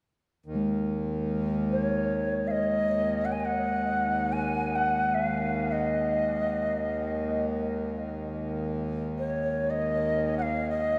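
A drenched, vast reverb surrounds this short cut from a longer piece of meditative world music, giving it a haunting, spacious air in free time. A reedy, breathing hand-pumped harmonium opens at 0.5 seconds with a low, up-front drone on Eb2. At 0.6 seconds a bronze singing bowl, struck with a felt mallet, adds a soft metallic ring with slow beating that sits in the background. From 1.7 seconds a hollow, woody cedar flute in the Native American style carries the melody between Db5 and Ab5, airy and mellow with gentle vibrato and a soft attack. The flute seems both up front and distant in the echoing space, and the bowl drops out at 8.6 seconds while the harmonium and flute carry on to the end.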